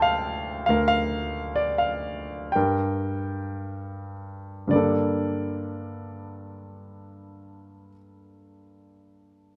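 A clear concert grand piano carries this brief classical piece alone, playing lyrically in G minor with a wistful, reflective mood. The tempo drifts between 54 and 70 BPM in a free, rubato 4/4, and the opening passage slows through its first 4.7 seconds as the harmony moves from a D5 chord through Bb over D to G minor. At 4.7 seconds a second passage begins on a G minor add9 chord, and the piano stops at 9.6 seconds, as the music is cut from a longer piece. Close, detailed microphones keep the instrument up front and present, with a polished tone, a deep bass reaching down to D2, a range extending up to A5, and notes that decay quickly. A light reverb surrounds the sound, and the piano is tuned slightly high, to A4 = 441 Hz.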